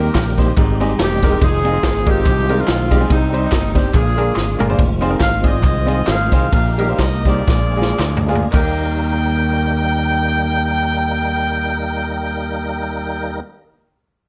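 Uptempo gospel in Eb major with a light swing, hopeful and soulful, moving between 107 and 142 BPM in a short excerpt cut from a longer piece. A clear, punchy saxophone section carries the melody up front, its smooth top and vibrato giving the lines a pop-style sheen, while a present grand piano supplies accompaniment across the whole passage. Beneath them, a full tonewheel organ holds sustained chords in the background through a slow rotary speaker and chorus vibrato, and a fingered electric bass sits up front with a warm, amped tone. A roomy, distant-sounding big-band drum kit swings with a punchy kick and medium-tuned snare, joined by group handclaps, tube shaker and tambourine in the background. The drums play a fill at 4.4 seconds and another at 7.5 seconds as the tempo slows, then drop out along with the percussion near 8.7 seconds, leaving saxophones, piano, organ and bass to settle onto a closing Eb chord in light studio reverb.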